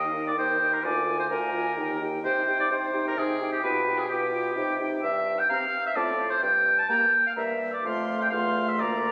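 A quick classical-period movement for wind quintet in triple time, this spirited, lively excerpt moves with a rubato feel, the airy silver flute carrying the melody with vibrato and a soft attack above a clear, up-front oboe on the second line. The dark clarinet sits in the background and the warm French horn adds accompaniment, while the mellow bassoon supplies the bass, all five playing together from 0.0 to 9.1 seconds. Captured on a phone in the room, the sound is bathed in wet concert hall reverb that leaves the oboe, clarinet, horn and bassoon distant and roomy.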